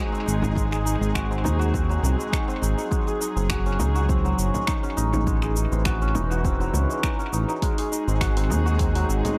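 A light reverb and digital ambience wrap this echo-heavy mix, cut from a longer piece of organic downtempo at 102 BPM in 4/4, with a 54% swing on the 16ths and a hypnotic, earthy mood rooted in G# phrygian dominant. Up front, a shimmering hammered santur plays ringing arpeggios through a tape echo, while a muted chamber string section holds veiled, con sordino chords with vibrato and a soft attack, pumping from sidechain. Underneath, a smooth synth bass of detuned sawtooth and triangle tones sits prominently and mellow, also pumping in the sidechain. The drums arrive almost at once: a deep house kit with finger snaps, shaker and dark hi-hats carries a dub echo, a very quiet, close and dry frame drum enters at 0.4 seconds, and an overdriven electronic kick comes in at 0.6 seconds. The harmony moves from G#7 to F#madd9, then to Amaj7 at 5.3 seconds, before returning to G#7.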